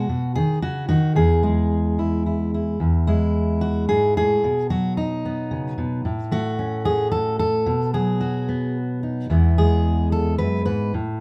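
The recording has a light reverb that gives it a close, natural air, with the guitar sitting up front. This pastoral, peaceful folk excerpt is a solo piece for fingerpicked steel-string acoustic guitar, heard in a gentle 3/4 with a straight feel. The jumbo-bodied instrument sounds full and warm, its fresh strings bright and lively, and a finger squeak adds a human touch. The part ranges from E2 up to B4, so low bass notes and higher melody share the same hands. The harmony moves between B, E and A, and the opening section repeats from 2.8 seconds, returning to E near 9.3 seconds before the cut at 11.2 seconds.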